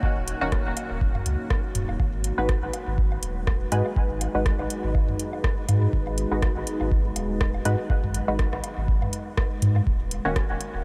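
Lightly reverberant and deep, this brief dub techno passage cut from a longer piece has a meditative, moody pull, with an overdriven electronic kick and a booming analog drum machine of metallic hi-hats and rim clicks, both re-recorded in a small room, while tape-warm electronic woodblock and toms sit in the background under dub echo. A round sine sub bass and a dark, detuned sawtooth pad with a slow attack and long release both breathe with sidechain pumping, the pad thickened by chorus and its own reverb. Over them, a muted, filtered chord stab with a short plucked decay evolves through chorus, phaser and dub echo as the harmony moves from Ebm7 to Abm7 at 2.0 seconds.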